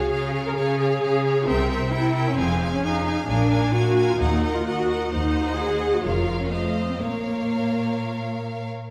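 A full string orchestra opens at once on a Db chord, launching a quick, urgent classical-period movement in Bb minor at 130 BPM, its beats pushed and pulled with rubato and its tuning set slightly low at A4 = 436 Hz. High in the texture, the violins carry a clear, intense melody between F5 and Ab5 with vibrato, while a second violin line beneath them holds Ab4 to F5. The warm, expressive violas sit up front with a smooth top, giving the accompaniment a sense of presence. Below, bright, focused cellos and distant double basses with light vibrato bow the bass line as the stormy harmony drives through C7, Fm, Bb7, Ebm and a diminished chord before settling on Bb minor at 7.0 seconds. The double basses drop away at 7.5 seconds and the violas at 8.5 seconds, all heard from further back in a wet concert hall whose 1.8-second reverb lingers around this passage cut from a longer piece.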